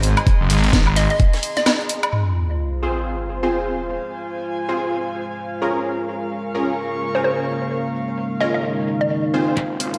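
A swung 129 BPM bass house groove in 4/4 opens with a cracking, tape-tinged garage kit with handclaps, woodblock and filtered hats and a very quiet, dry cocktail kit with a high-tuned snare, joined just after the start by a knocking electronic kick, while a thick, swirling, saturated saw bass pumps underneath and, at 1 second, a hollow, bouncy square pluck with chorus and delay flickers in above. At 2.1 seconds a sub drop hits as the harmony moves from Ab to Bbm7 and the drums take on a filter sweep, and from 2.8 seconds bold, punchy orchestra-hit-like stabs with phaser and delay arrive over a deep, moody ambient pad and an airy, breathy pad that both pump. The gritty, dreamy mix sits in a lush hall reverb, and the kick, bass and garage kit return for a short drum fill at 9.6 seconds before this excerpt cuts off.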